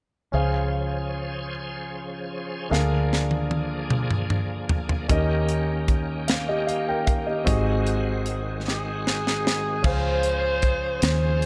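Reverent and jubilant, this slow gospel excerpt in 6/8 at 50 BPM opens at 0.3 seconds with a clear, intimate grand piano carrying the accompaniment, a shouting tonewheel organ holding sustained chords through a slow rotary speaker with chorus vibrato and key click, and a round, foam-muted fingered electric bass, before a tight funk drum kit with bright cymbals and a high-tuned snare enters with a fill at 2.7 seconds, and a mellow alto saxophone with scooped notes and slapback echo takes the melody at 8.7 seconds, shortly before the Db major progression returns to Dbmaj7 under light reverb.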